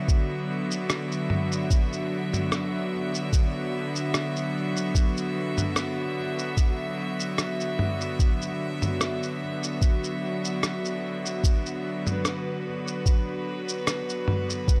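A thumpy, pitched-down electronic kick sits up front in this deep, meditative ambient dub cut at 74 BPM in B minor, alongside a muffled lo-fi sampler-style kit of rim click, shaker and toms washed in dub echo, while a bright, earthy chamber string section holds bowed chords on Bm throughout the 14.8-second excerpt.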